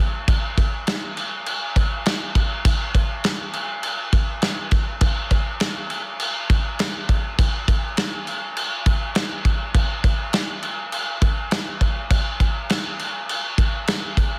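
A straight 4/4 rock beat at 101 BPM runs from 0.3 to 14.3 seconds on a loose indie drum kit, its punchy kick, medium-tuned snare and crash cymbal sitting up front in a small room. The acoustic kit sounds mid-forward with dark cymbals and little reverb, carrying a wistful yet blissful mood through this short cut from a longer piece. The master is dense and heavily limited in a modern style.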